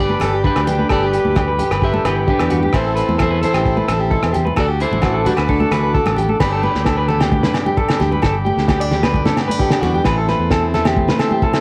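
A compressed, slightly broken-up electric guitar sits up front, picking arpeggios through an analog delay in this sunny highlife guitar band excerpt in G major at 131 BPM in a straight 4/4. A second, darker electric guitar, fingered and colored by cassette tape, carries the melody, while a mellow trumpet plays a second line in the background with light vibrato and a smooth top. Both drop out at 6.1 s, just before the music moves into its next section at 6.4 s. Underneath, a picked plugged-in steel-string acoustic guitar adds accompaniment with audible finger squeak, a reedy vintage combo organ holds clean sustained chords high above, and a fingered electric bass plays direct and warm. The cloth-damped drum kit sounds thuddy, muffled and gritty, with a fat snare, tight kick, rim clicks, hi-hat and dark crash in a small room with a rolled-off top. High-tuned congas and close, ringing agogo bells sit in the background, and the home cassette recording carries light reverb over chords moving through G, Am and D.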